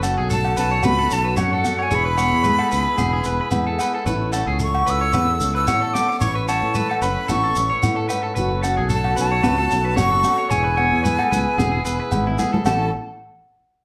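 A joyful, carefree highlife groove at 112 BPM in A major opens with thumb-plucked nylon-string guitar, buzzy vintage combo organ chords in the background, twangy, slightly broken-up electric guitar arpeggios and a warm, up-front fingered electric bass, while ringing agogo bells, a grainy shekere and soft-handed, damped congas add a lightly swung pulse. From 0.3 s a breathy, bright jazz flute carries the melody with vibrato and a crisp, chiffy attack over chords moving from F#m through E to A. The band sounds live in one room, bathed in a wet large studio reverb, and a drum fill at 12.1 s arrives just before this passage is cut off.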